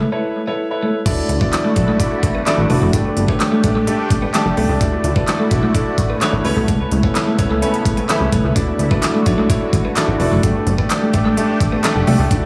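An up-front grand piano carries the chords through this upbeat, summery dance-pop clip, treated with sidechain pumping and analog delay and adding short fills at 4.1 and 11.6 seconds. A punchy, plucky analog bass and a bright, twangy twelve-string electric guitar riff in the background play from the start, and the drop lands at 1.1 seconds with a knocking, layered electronic kit of fat snare, crisp hats, handclaps and crash, while a lush, detuned pad with chorus and phaser fills in behind. Faint, hollow group handclaps surface near the end of an echo-heavy mix with light studio ambience.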